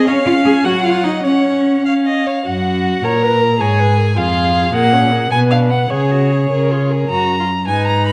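The cello sits close and up front, its warm sul tasto tone carrying a soft attack, an airy bow and light vibrato as it holds down the bass in this short excerpt from a longer piece. This is a quick classical-period movement for string quartet in F# major and 6/8, running at about 97-107 BPM in dotted quarters with a rubato feel and a restless, urgent mood. The first violin leads the melody up front, its rich, smooth and even tone shaped by vibrato, while the second violin adds a focused, bowed second line beneath it. The viola fills in the accompaniment from a more distant position, its vibrato-laden sound also focused and full. All four players sound together from start to finish, with the opening section giving way to a new passage at 2.5 seconds, where the harmony moves through chords such as G#madd9, Fm, Bm and C#sus4 before settling on Gb. A recital-hall reverb with a 1.6-second decay surrounds the group in a dark production.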